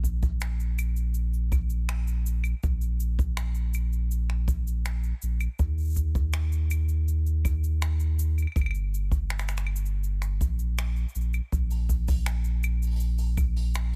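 Delicate and hopeful, this folktronica excerpt moves at an unhurried 81 BPM in a straight 4/4 feel. A deep, round sub bass built on a pure sine tone sits up front from the start, its fast attack giving way to sustained, mellow notes that range between G1 and Eb2. Beside it, an acoustic kick drum with a boomy, polished character also stands forward in the balance, played with brushes and carrying the airy quality of a small room. A quieter jazz brush kit fills in the background with cabasa, claves, finger snaps and hi-hat, adding a light, rustling texture. The kick drops out at 13.5 seconds while the bass and brush kit carry on to the close at 14.0 seconds, all in a dry, intimate sound with little reverb.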